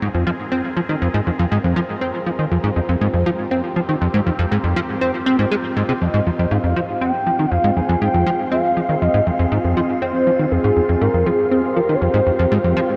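Drenched in a huge, long-tailed reverb with the highest frequencies rolled off, this cosmic, hypnotic fragment of sequencer-driven space music holds on an F minor chord at 120 BPM in a straight 4/4. A punchy, funky analog bass riff with a ring-modulated, filter-plucked sawtooth edge sits up front, while a swirling, detuned phased pad fades in behind it alongside a breathy, wind-like tuned noise texture in the background, both glistening with shimmer reverb. At 6.0 seconds a smooth, expressive synth lead enters with vibrato and chorus, its dark, triangle-tinged tone trailed by analog delay.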